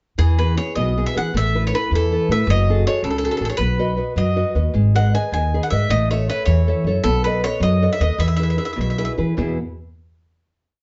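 Romantic and sunny, this short Italian folk serenade in a rubato 6/8 sets a bright, double-strung bowl-back mandolin picking a free, wandering melody up front over a small-sounding fingerpicked nylon-string guitar's oompah of bass notes and chord figures and a woody, thumpy pizzicato gut-string upright bass playing roots and fifths on the main beats, all heard from further back in a reverberant studio with a softened top end before the trio settles onto a final chord at 9.4 seconds.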